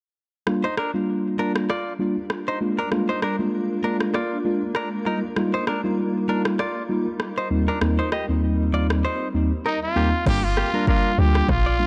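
Smooth and hypnotic, this afrobeats clip at 98 BPM in G minor with a light 16th-note swing rides a mellow, up-front tine electric piano and a cloudy, evolving granular pad over Gm7, Bb7, Ebadd9 and Cm7/Eb. An electronic, overdriven afro-pop drum kit with a deep kick, rim clicks and crash plays alongside a bright, twangy clean guitar riff carrying tape echo. A raspy, growling trumpet enters at 9.7 seconds, and at 10.3 seconds the hi-hats drop away as a woody, punchy log drum bass arrives on a return to Gm7, all within a dark, lightly reverberant production.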